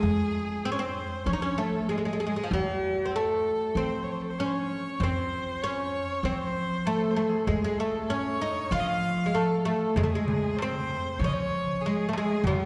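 Arabic maqam ensemble music with a festive glow, led by a woody, up-front oud plucked with a plectrum on its doubled strings, joined by a single bowed violin with a smooth, focused vibrato on the second line and a pizzicato upright bass on steel strings, while a crisp, saturated metal-shell darbuka slips in from the background at 10.0 s, the ensemble heard from further back in a lush concert hall reverb in this fragment of a longer piece.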